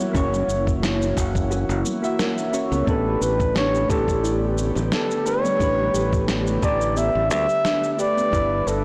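A gently swung groove of gritty, sampled kick, snare and shaker, with very quiet, distant bongos and congas, carries this blissful sunset chillout excerpt, anchored by a growly, up-front fingered electric bass. Round electric-piano-like synth keys, colored by chorus, phaser and delay, sound alongside a breathy, very quiet pad and a woody kalimba playing arpeggios in the background. At 2.9 seconds a dark, veiled trumpet with a bucket mute takes the jazz-style solo melody with light vibrato, all set in a lush hall reverb on a blown-out, overdriven recording.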